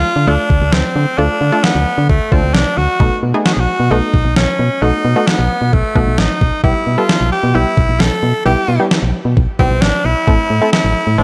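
Synth-pop at 132 BPM in 4/4, cool and driving, cut from a longer piece and tuned to A4 = 435 Hz, moving through Dm, B7, Em/B and Am. A raspy, gritty tenor saxophone carries the melody up front with light vibrato and forceful pop phrasing, bathed in shimmer reverb and tape echo, over a detuned sawtooth analog pluck with chorus and shimmer, and a punchy, round, dark FM bass. A clean 12-bit sampler-style drum machine enters at 0.5 seconds and stops at 10.8 seconds, its thumpy kick and medium-tuned snare tape-warm and re-recorded in a large room, all under a light reverb.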